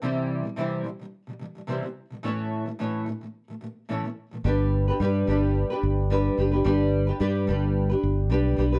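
A sunny, carefree acoustic pop excerpt in G major at 109 BPM opens with a double-tracked, fingerpicked nylon-string guitar, small and up front, carrying the accompaniment over a lightly swung sixteenth-note feel as the chords move from C to A. At 4.4 seconds a fingered electric bass joins, round, direct and amped, sitting up front in the low register as the harmony settles on G. Moderate studio reverb and a dark, warm production shape the short clip.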